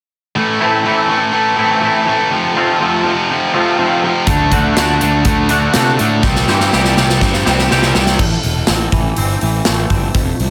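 A tight, up-front distorted guitar riff opens this angsty, dark stretch of quiet-loud alternative rock, joined almost at once by a clean, fingered electric guitar playing twangy arpeggios through ensemble chorus. At 4.3 seconds an overdriven, fuzz-laden picked bass and a big acoustic drum kit arrive, the kit bringing a punchy kick, medium-tuned snare and bright cymbals, with a drum fill from 6.2 seconds. The distorted riff stops at 8.2 seconds as a new section begins, leaving the arpeggios, bass and drums in a moderate studio reverb.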